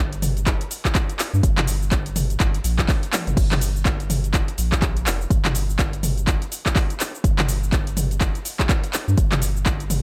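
A dry, close mix with barely any reverb frames this short cut from a longer afro house piece, earthy and warm in mood, moving at 124 BPM in 4/4 with a 59% swing on the sixteenths in G minor. A round analog bass sits underneath from the first moment, dark and nasal, with a fast attack and sustained notes between F1 and G2, pumping against the sidechain. The deep house drum kit sits up front, layered and overdriven, bringing crash cymbal, handclaps, metallic hi-hats, shaker and toms, and it plays a drum fill at 3.1 seconds. An electronic kick drum arrives at 0.5 seconds, deep and gritty with overdrive, re-recorded in a large room, and it stands a little louder than the other parts. The whole passage holds a single section, warm and grounded from start to finish.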